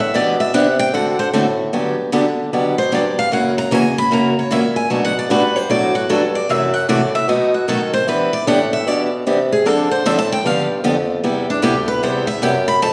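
A bittersweet, swinging stretch of acoustic string swing in the jazz manouche style, moving at 152 BPM in G major with chords that include Em7, Gmaj7, F#m7b5 and Cmaj7. A bright picked steel-string acoustic guitar takes the melody as a solo throughout, with audible finger squeak, over a second up-front guitar whose boxy, parlour-like accompaniment rings with fresh strings, while a mellow bassoon with light vibrato carries the bass line in a vintage, classical manner. The whole ensemble sits in a wet recital-hall reverb that gives it the air of a church or concert hall.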